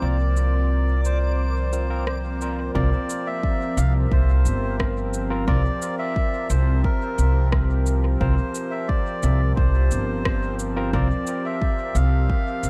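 At a relaxed 88 BPM in a straight 4/4, an electronic cabasa and rim click enter at 0.4 seconds with dub echo, and a deep, layered electronic kick drum joins at 2.8 seconds to carry this hazy, spacious ambient dub passage in C mixolydian, cut from a longer piece. Up front, a pizzicato upright bass with gut strings gives a woody, thumpy low end. A smooth, warbling analog pad built from sawtooth and wave-folded sine tones opens on a C7sus4 chord with a soft attack and chorus. Above it, a reedy, breathy melodica with a nasal plastic-case tone carries the melody through vintage 12-bit sampler grit and dub echo. In the background, a bright, barky tine electric piano adds clean stabs through a combo amp, low-pass filtered and echoed, until 11.1 seconds. The opening section features a dreamy, reversed granular texture that swells in the distance while filter sweeps shape the drums and the pad, all set in light reverb and digital ambience.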